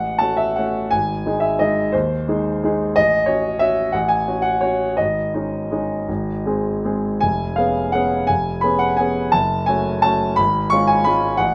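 Elegant and nostalgic, this classical piano waltz moves in 3/4 with a flexible rubato feel, its tempo drifting between 153 and 193 BPM. A solo concert grand carries the whole 11.5-second passage, spanning from E#1 in the deep bass up to C#6. The instrument sounds clear and open, sitting up front, with a rich low register that anchors the lilting triple metre. The harmony circles through F#m/A, G#, G#sus4 and C#7/E#, settling on F#m at 9.3 seconds before turning to C#7/G#. A moderate studio reverb with a 0.7-second decay adds a sense of space, and the passage is cut from a longer piece.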